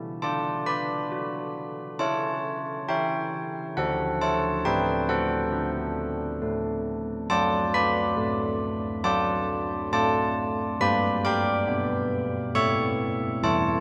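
Serene and festive, this classical church-bell tune moves at an unhurried 68 BPM in 4/4, with a solo carillon ringing from D3 up to D6 over chords that settle into D major from 7.3 seconds. The bells sit up front with a bronze, dark tone, a smooth iron-clapper strike and a distinct minor-third overtone. A cathedral reverb with a 5.2-second decay places the carillon in a vast, echoing space, and the passage is cut from a longer piece.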